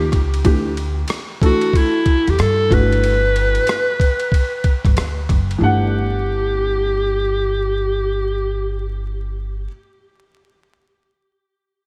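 A clear, forceful clarinet carries the melody up front with jazz vibrato and a touch of delay, floating over a dark, slightly detuned upright piano whose worn, boxy chords carry audible action noise and a subtle chorus. This relaxed, cool jazz-hop cut from a longer piece moves at 93 BPM with a swung feel in G major, anchored by a woody, growly pizzicato upright bass and a gritty, pitched-down boom bap drum kit with a thumpy kick, hi-hat, ride and rim click that drops out at 5.6 seconds. The dreamy mix is soaked in plate and small-room reverb and dusted with vinyl crackle, drifting through Dsus24 and Gmaj9 before settling on Gsus2.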